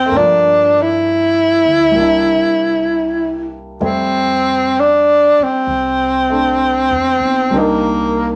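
Jazz ballad in F major at a slow 65 BPM with a swung feel, this late-night, romantic excerpt moves through Gm7, C9 and Fmaj7 before touching Cm7 at 7.5 seconds. An intimate, breathy tenor saxophone carries the melody up front with a whispered, soft attack and gentle vibrato, while a worn, present baby grand piano supplies accompaniment. A woody, thumpy pizzicato upright bass with gut strings sits low in the mix, all within a moderate studio reverb.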